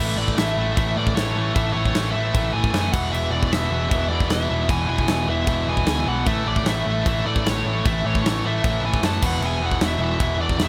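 A high-gain lead guitar with distortion and tape echo carries the melody over two picked riffing guitars, one overdriven and sitting in the background and the other tight and distorted, plus a growly, amped electric bass, joined at 0.3 seconds by a big-room acoustic rock kit with bright cymbals, a medium-tuned snare and a punchy kick, in an energetic, rowdy, fairly dry punk rock excerpt that alternates between A and E chords.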